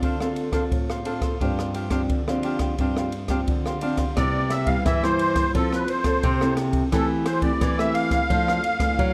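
A straight 4/4 samba-and-choro groove rides on an open jazz drum kit, up front with a boomy kick, dark ride cymbal and rim clicks, beneath a small fingerpicked nylon-string guitar and a crisp, picked cavaquinho that plays until 4.2 s. From there, a reedy, shimmering musette accordion carries the melody with a vintage, band-limited tone up front, while a second, classical fingerpicked nylon-string guitar enters on bass. This lively, sunny excerpt sits in a moderate large studio reverb with a warm production, and its harmony moves from minor-seventh and suspended chords to major-seventh colors.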